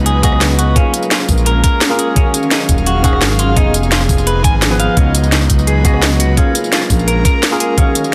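Lush and soulful, this 171 BPM liquid drum and bass excerpt sets a worn, slightly out-of-tune tine electric piano with dub echo and an airy, breathy detuned pad with chorus over a smooth, gliding sawtooth synth bass with vibrato and portamento, while a clean picked electric guitar plays delayed arpeggios, a knocking electronic kick joins an up-front kit of cracking snare, crisp hats, rim click and tambourine, and chords move from Db9sus4 through Bbm7, Ebm11 and Fm7b5 in a moderate hall reverb under a dense, heavily limited master.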